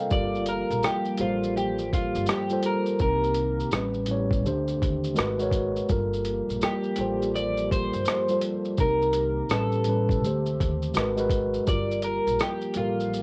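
Lo-fi hip hop with a melancholic, nostalgic mood, this cut from a longer piece moves in 4/4 with a relaxed swing on the sixteenths. A mellow, clean tine electric piano sits up front with the chords, while a dark, detuned analog pad with chorus and a slow attack hums deep in the background. At 0.1 s an electric guitar through a small old amp joins, carrying the melody with a picked, slightly broken-up tone and analog chorus, alongside a woody pizzicato upright bass and a muffled, compressed sampler-style kit of hi-hat, thumpy kick, rim click and shaker. The piano, pad, guitar and drums all carry a cassette tape coloring, and the whole is set in a modest booth ambience with a homespun cassette character. The harmony circles from Gm11 through Cm7, A9, D7sus4 and Abm9 before settling on Gm9, then repeats that turn.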